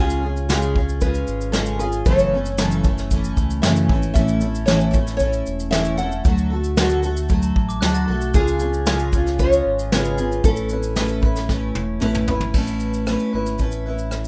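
A soft brush kit sits up front with a punchy kick and medium-tuned snare in this carefree, heartfelt acoustic pop excerpt at 114 BPM in A major, alongside a full-bodied, double-tracked picked dreadnought steel-string guitar, a small fingerpicked nylon-string melody with audible finger squeak that stops at 12.2 seconds, a deep sine sub bass with octave, a bell-like glockenspiel ringing briefly in the background from 7.4 seconds, and a drum fill at 11.5 seconds, heard through a rough home demo mix with moderate small room reverb.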